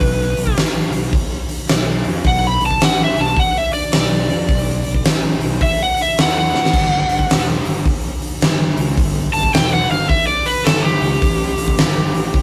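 A swung 4/4 groove at 107 BPM drives this heavy, smoky blues rock and southern rock power-trio excerpt, with a huge arena drum kit up front (punchy kick, fat snare, bright cymbals and hi-hat) throwing in a fill at 6.5 seconds. A growly, fuzz-soaked fingered electric bass holds down the low end beneath an overdriven slide guitar played with fingerpicks, which takes a searing solo from start to finish. The harmony moves from Asus2 to Emadd9 and then Gsus2, all caught in a rough rehearsal-room recording with light reverb.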